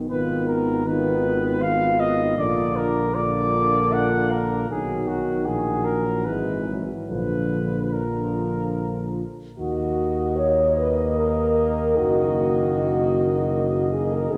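Yearning and solemn, this hymn-like classical excerpt for brass band moves in a rubato 3/4 at roughly 70-81 BPM in Eb minor, with a mellow, vibrato-touched cornet singing the melody up front over a dark, tight French horn section's second line, a clear solo trombone and a lightly vibrato trombone section in the background, and a smooth-topped tuba anchoring the bass, all heard from further back in a wet concert hall whose harmony drifts from Fm7b5/Ab through Bb, B and E/G# before settling on Ebm when the second section begins at 9.6 seconds.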